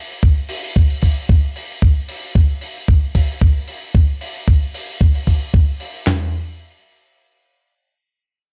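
A dusty, sampler-style soul drum kit opens this groovy, feel-good nu-disco fragment at 0.2 s, its compressed, gritty hits pairing a thumpy kick with a medium-tuned snare, handclaps and toms, re-recorded in a large room and sitting up front, while a quieter, dry acoustic hi-hat joins at 0.5 s over a lightly swung sixteenth-note feel until both fall away near 6 s in a raw hardware recording.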